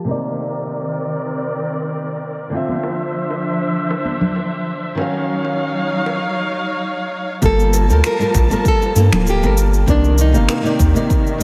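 A relaxed 98 BPM groove in 4/4 with a light 16th-note swing carries this smooth sunset chillout excerpt in G minor, slightly sharp of standard pitch. It opens on a dark, fingerpicked flamenco guitar with delay, set against a bowed studio string section whose vibrato, portamento and smooth top sit under a filter sweep, moving through lush minor-ninth chords from Cm9 to Ebm9. Bright, hard-handed congas and bongos slip in at 2.7 seconds, kept in the background with a slapback echo. At 7.4 seconds, as the harmony lands on Gm9, a round, deep analog bass comes up front with a fast attack, joined by an overdriven electronic kick and layered, produced electronic cabasa and finger snaps. From 7.5 seconds a full-bodied nylon-string guitar takes the melody with fresh strings and audible finger squeak, treated with delay and slapback echo. The whole mix sits in a lush hall reverb with a big arena sound and a low-pass filter.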